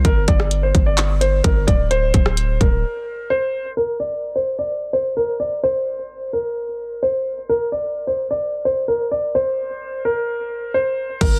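This brooding, dark trap and hip hop cut is taken from a longer piece and moves at 129 BPM in 4/4 with a half-time feel. A dark, mellow concert grand piano carries the melody from start to finish in a narrow band between Bb4 and D5, with a low-pass filter and digital delay, audible action noise and a smooth, vintage, intimate character. At the opening, a hard-hitting 808-style bass with a punchy sine tone, fast attack and noise layer sits up front under a G5 chord moving to Bbadd9/D. A trap drum kit, electronic and re-recorded in a small room, adds a hard-clipped kick, bright hi-hats, handclaps, rim clicks and crash. The drums drop out at 2.7 seconds and the bass at 2.8 seconds for a break, leaving the piano alone, and a long filter sweep runs from 3.8 seconds over unaccompanied piano until bass and drums return briefly at 11.2 seconds. The dry, dense, heavily limited master carries a faint mains hum.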